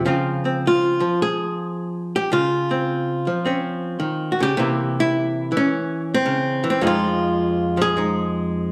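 Moody and cool, this short solo jazz excerpt swings in 4/4 with a lone archtop guitar, clean, hollow-bodied and up front, whose picked, compressed tone moves through Dbmaj7, C7 and Fm7 inside a wet studio reverb and a dark, warm production.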